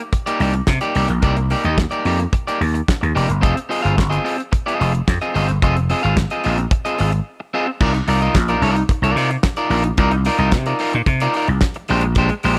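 A growly, punchy vintage slap bass sits up front in this glamorous, danceable disco piece, entering at 0.4 seconds and moving between F1 and C3. It rides a straight 110 BPM groove in 4/4 in C minor, set by a damped 70s drum kit with a fat snare, tight kick, dark cymbals and hi-hat, all dry and rolled-off at the top. A picked electric guitar at the edge of break-up, slightly broken-up in tone and also up front, supplies the accompaniment from Ab3 to F5. The harmony moves from Cm9 to Fm7, and after a brief break at 7.3 seconds, a new section begins at 7.8 seconds on Cm11 before reaching Bb13. Light reverb gives the mix a touch of space in this short cut from a longer piece.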